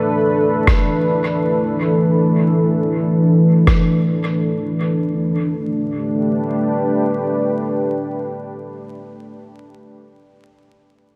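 A deep, dark ambient pad dominates this spacious ambient dub excerpt in free time, its detuned sawtooth and sub-octave layers holding sustained chords from E5 to A9sus4 with slow attack, chorus and a moody glow across the full 8.9 seconds. A thumpy, pitched-down electronic kick sits up front alongside a muffled rim click carrying dub echo, both sampler-style and compressed, playing from 0.7 to 3.8 seconds. A wet echo chamber and vinyl crackle wrap the piece in a deep, cavernous atmosphere.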